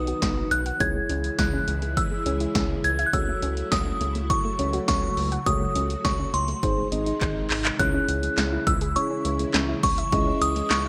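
A straight 4/4 synth-pop groove drives this short, melancholic excerpt, carried by a punchy analog drum machine whose kick, snare, handclaps and hi-hat sit up front in gated reverb from 0.1 seconds, with a drum fill at 7.2 seconds leading into a new section at 7.8 seconds. Beneath it, a chorused synth bass adds a glossy, retro low end, while a mellow tine electric piano supplies clean, direct accompaniment. A phased string machine swirls through sustained chords, and a soft, round pluck warbles through arpeggios tucked in the background with chorus and digital delay. On top, a glassy, crystalline synth bell carries the melody, its FM tone shimmering with chorus, tremolo and digital delay. The harmony opens on B, settles on C# minor, and moves through A6/C#, F#m/C# and G# before returning to C# minor, all framed by a plate-reverb ambience and a bright 1980s-style digital production.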